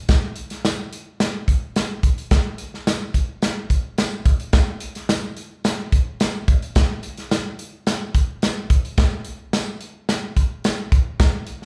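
Danceable and uplifting, this short soul excerpt at 108 BPM in a straight 4/4 features an up-front acoustic drum kit with a punchy kick, medium-tuned snare and hi-hat, sounding airy and polished in a moderate large studio reverb, while a jingly, close and dry tambourine sits very quietly beneath it, as if the band were playing live in one room.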